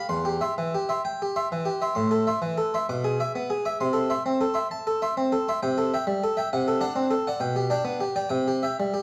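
This is a classical, baroque-style suite movement for solo harpsichord, serene and radiant, moving at a slow 66 BPM counted in dotted quarters in 6/8 with a freely rubato feel. The harpsichord, plucked and French in style, sounds round and warm on a single set of strings, placed up front and spanning E2 to D6 across the whole nine seconds. The harmony drifts through C/E, Am and E7/B before settling into G major from 5.6 s, passing through D7/C and G/B to close on C. A moderate recital-hall reverb gives the instrument a sense of space, while the sound carries the character of worn, warbling old cassette tape with vinyl crackle and a wavering pitch drift. It is a short cut from a longer piece.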